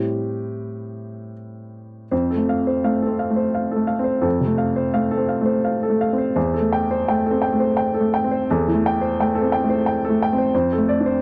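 Neoclassical minimalist piano in a melancholic, intimate mood, this short fragment of a longer piece features a solo upright piano with a woody, smooth, vintage tone and short sustain, played up front at 86 BPM in 3/4 with uneven, rubato beats across E2 to G5, moving from Am7 through F and C6/E to Dm7/F in a dry, close 1970s-style studio sound.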